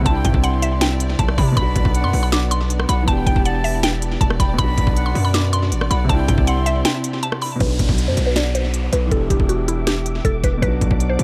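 A half-time trap groove at 159 BPM in 4/4 drives this dark, eerie hip hop excerpt in B phrygian, with an electronic trap kit sitting up front: a knocking kick, sharp snare, crisp hi-hats and rim clicks, all colored by tape echo. Beneath it, a distorted 808-style bass hits hard with a fast attack and saturated, aggressive decay, reaching down to E1. A woody, round synth pluck with a mallet-like FM character carries the melody, thickened by chorus, low-pass filtering and tape echo, while a clear grand piano with audible action noise plays filtered, echoing accompaniment. A lush, bowed string section holds sustained chords with vibrato and a soft attack in the background, and a breathy, straight-toned concert flute adds a close-miked second line until 6.8 seconds. After a brief break, a filter sweep opens the second section at 7.6 seconds, where an electronic downlifter drops in, all in a dry, echo-heavy mix that circles through Cadd9, Bm and Em7.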